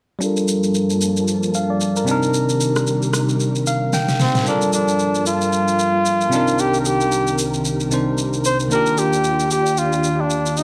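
Amapiano with a late-night, deep mood, built on a bell-like tine electric piano and a silky string machine pad under a fat-snared electronic groove of shaker, rim click and snare, all bathed in the wet reverb of a recital hall. A filter sweep opens the passage, and an electric piano fill with a drum fill leads into a new section at 4.5 seconds. A veiled, bucket-muted trumpet with tape echo carries the melody up front from 4.2 seconds, with scooped notes over chords that move from Gm9 to Cm7 and settle on Ebmaj9.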